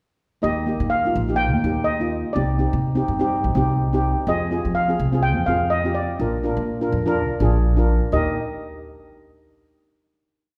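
Opening at 0.4 seconds, this short, bouncy and festive calypso sets a lead steel pan, played with soft rubber sticks, spinning a shimmering, motif-based melody in period phrases over cello pans sounding dark, smooth syncopated triad chords and a woody pizzicato upright bass with a syncopated figure, all up front in the lush reverb of a church-like hall until a final chord arrives at 8.1 seconds.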